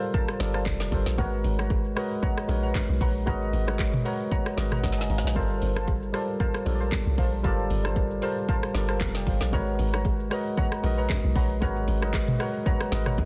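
Amapiano at 115 BPM with a soulful, deep mood, this excerpt sets a worn, slightly out-of-tune tine electric piano up front over an electronic afro-pop drum kit with a deep kick, woody snare with soft clipping and metallic hats, a round, percussive log drum bass from 0.4 seconds, dark detuned chord stabs with chorus and delay, and very quiet ringing congas and bongos. Gm11 and Abm11 chords alternate, and a piano fill arrives near 4.3 seconds, joined by a drum fill near 4.8 seconds, in a dense, dry, heavily limited mix.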